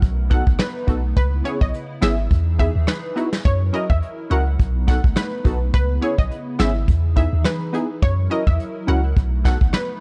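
Dancehall at 105 BPM with a gently swung, hypnotic bounce, built from a cycling B7, C#m7, Emaj7, F#7 progression: up-front brushed drums with a punchy kick and dark, rolled-off top ride over a deep sine sub bass with a pitch-drop attack, while a hollow, flute-like pad breathes under ensemble chorus and sidechain pumping, punchy detuned chord stabs and a round, warbling analog pluck melody with tape echo enter at 0.3 seconds, all in a dark, small-room production cut from a longer piece.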